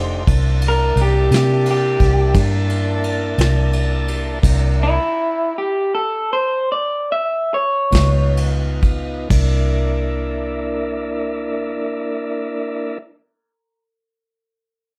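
A swaggering, laid-back slow blues in 12/8 at 41-58 BPM in C mixolydian, cut from a longer piece, led by an electric guitar through a small old amp playing a picked, slightly broken-up, compressed lo-fi solo bathed in spring reverb that slows from 3.0 seconds and ends at 8.4 seconds. Beneath it, a dark, round, foam-muted fingered bass sits up front while a smooth tonewheel organ holds sustained chords with key click and a slow rotary speaker, moving through C13, C9 and Db9. A warm brushed vintage kit with a punchy kick and rolled-off top plays until 9.5 seconds, leaving organ and bass to carry on in light reverb.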